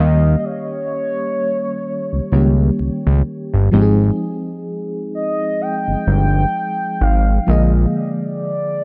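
A fat, detuned analog bass sits up front in this tender, smooth contemporary R&B excerpt at a slow 64 BPM with a swung sixteenth feel in Eb major, holding until 7.9 s beneath a round, warbling FM electric piano with chorus and tremolo and a gliding sawtooth-and-sine portamento lead carrying vibrato, chorus and analog delay, the dreamy mix soaked in a lush 2.8-second hall reverb over Eb7, Ab6 and Bb7 chords.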